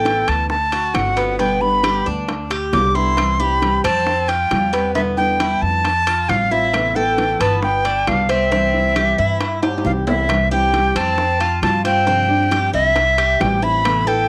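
A breathy, bright jazz flute sounds from the very start of this relaxed, danceable excerpt of Cuban son and guajira, riding up front over a fingerpicked nylon-string guitar, a Cuban tres and a pizzicato upright bass that all enter with it, in C major at 135 BPM in a straight 4/4. The flute carries the melody with vibrato, a crisp, chiffy attack and a metallic, almost reedy edge. Beneath it the classical guitar accompanies softly, the tres picks shimmering arpeggios on its doubled, partly octave-paired strings, and the bass supplies a growly, thumpy low end. Round, low-tuned bongos sit in the background with ringing metal-shell timbales, while very quiet, dry claves tick along until 9.9 seconds, just as a drum fill from 9.6 seconds leads into a repeat of the opening section. Chords move through D7, G, C, Em7, Fadd9 and Amadd9 before settling via G7sus4 back to C, and the flute, guitar and tres carry a cassette-tape colour within a homemade recording touched by light reverb.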